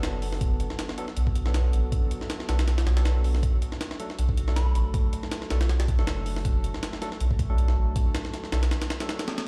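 A gritty, pitched-up jungle drum kit sits up front with a thumpy kick and high-tuned snare, driving this frenetic yet nostalgic drum and bass excerpt over a deep, round dub sub bass that drops out for a short break at 8.7 seconds. A barky, lightly overdriven tine electric piano punches out stabs through crunchy 12-bit sampler grit and dub echo, while a very quiet, warbling tape-like pad holds sustained Bm7 chords beneath. A soft, pure FM bell flickers briefly at 4.6 seconds in the background, all set in a big, bare-room ambience.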